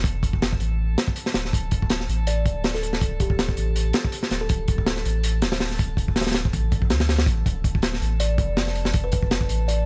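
Wrapped in studio reverb and a film of vinyl crackle, this dark, atmospheric drum and bass excerpt in D minor runs at 162 BPM with a light swing, built on a gritty, up-front breakbeat kit with a punchy kick and a rolled-off top, over a deep, thick saturated sub bass. A calm, glassy texture of drifting overtones sits in the background with chorus and its own reverb, while a woody, mellow kalimba carrying dub echo enters at 2.3 seconds and returns at 8.2 seconds. The harmony moves from a rootless D minor to a bare D fifth and back to D minor.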